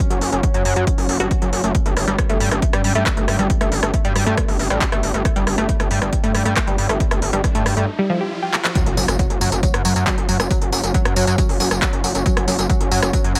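Driving peak-time techno at 137 BPM in F# phrygian, dark and driving, where an overdriven punchy kick and a tape-warm layered kit of smooth hats, handclaps, rim click and tambourine push under a gritty, saturated sawtooth bass with ring-modulated bite, a nasal, detuned analog pluck riff coloured by phaser, 12-bit grit and digital delay, and a warbling pulse-width drone in the background, until a distant riser from 7.1 seconds and a drum fill at 8.5 seconds lead into an impact and the drop at 8.8 seconds.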